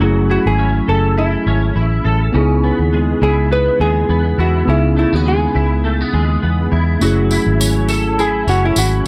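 A lightly swung 4/4 groove at 103 BPM carries this short cut from a longer indie pop and bedroom pop piece in C# minor, with a lonely, mellow mood. Up front, a dark, foam-muted fingered electric bass with tube saturation sits round and amped beneath a direct tine electric piano tinted by cassette tape. A bright, twangy twelve-string electric guitar adds a compressed, picked accompaniment through ensemble chorus and warbly pitch drift. From 0.3 seconds a hollow-body jazz guitar carries the solo melody in a clean, picked tone, dressed in subtle chorus and tape echo. The harmony moves from F#m7 to C#m7 and back to F#m7, and a jingly, saturated tambourine joins at 7.0 seconds, all set in light reverb and digital ambience on a dry, gritty hardware recording with transformer saturation.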